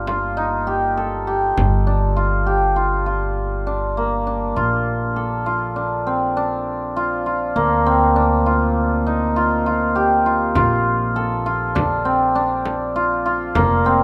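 A mellow, shimmering cimbalom sits up front, its hammered arpeggios ringing through this hypnotic yet urgent contemporary chamber piece in an uneven 5/4 metre, moving from F9/G to Bbmaj7 at 4.6 seconds and on through Gm/D. Beneath it, a pizzicato upright bass with steel strings adds a woody, growly low line. A deep, large frame drum with a compressed, saturated tone appears briefly at the start and returns at 10.6 seconds, all captured with close, detailed microphones and light reverb in a passage cut from a longer work.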